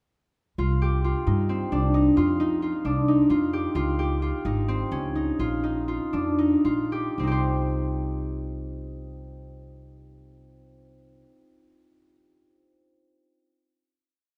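A moderate scoring-stage reverb surrounds this brief, pensive yet urgent piece of contemporary chamber music in 7/8 and C minor, moving at 221-266 eighth-note beats per minute. Up front, a concert harp rings out a bright, fingerpicked arpeggio ostinato while an upright bass plays woody pizzicato roots and fifths on the main beats, moving from C minor through D-flat and B-flat. The music slows from 3.8 seconds and settles onto a closing C minor chord at 7.2 seconds.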